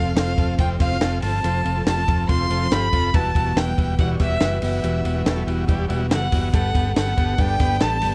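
A dry, close 1970s-style studio sound frames this brief, nostalgic and youthful snippet of jangly indie pop at 141 BPM, where an up-front, rich bowed violin with slapback echo carries the melody over a buzzy overdriven combo organ, a full-bodied picked acoustic guitar in the background, clean electric guitar arpeggios bathed in lush chorus, a round, foam-muted fingered electric bass, and a compact cocktail drum kit with a punchy kick, high-tuned snare and dark cymbals that enters at 0.2 seconds together with a very quiet jingly tambourine, all moving through F, Emadd9 and Gadd9.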